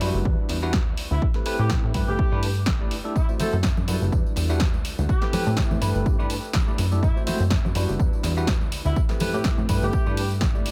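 An up-front, tape-warm electronic kick drum drives this short section of nostalgic, sensual filtered disco house at 124 BPM in 4/4, entering at 0.3 seconds and carrying a slight 16th-note swing. Beneath it, a plucky analog bass with a fast attack and decaying filter pluck pumps against the kick, while a punchy analog drum machine supplies snare and hi-hats that sound re-recorded in a large room, with sidechain pumping on the hats. A bright, bell-like tine electric piano plays the accompaniment, roughened by vintage 12-bit sampler grit and colored by phaser, pumping and dub echo as it moves through a looping Em7, Am7, G6, F#m7b5 progression. From 1.1 seconds a mellow, distant horn section carries a tight, pop-style melody steeped in dub echo, and at 3.2 seconds soft-handed tambourine and congas join in the background from a small room. The whole mix sits in an echo-heavy digital ambience.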